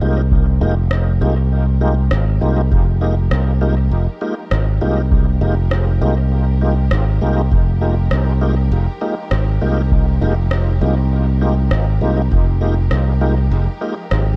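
A 4/4 groove at 100 BPM, with a light 16th-note swing, sets this hazy, deep ambient dub fragment in F minor. A dry, deep analog-style electronic kick enters at 0.3 seconds, and a rim click follows at 0.9 seconds, its sound thrown into a large room and trailed by dub echo. From the first moment, a bright, growly fingered electric bass sits punchy and up front in the low register. A tonewheel organ plays full, lightly overdriven stabs coloured by chorus vibrato, a slow rotary speaker and its own dub echo. Beneath them, a bowed studio string section holds smooth, focused sustained chords with ensemble vibrato, fading in gradually across the whole 14.4 seconds. The piece rests on a single Fm11 chord inside a dark, warm production wrapped in digital ambience.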